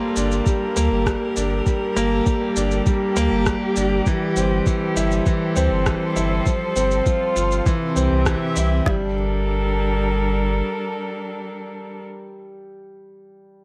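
A straight 4/4 pulse at 100 BPM drives this moving, intimate piano and strings electronica in G dorian, cut from a longer piece, as a brilliant grand piano riff with tape echo and audible action noise rides over veiled, con sordino string quartet chords with vibrato and portamento and a round sine sub bass, both strings and bass pumping to the sidechain, while a tape-warm, layered electronic shaker and rim click join an overdriven organic electronic kit with a soft kick and woody snare in a light digital ambience, the drums stopping by 9.0 s and the piano playing alone from 12.0 s to 13.6 s.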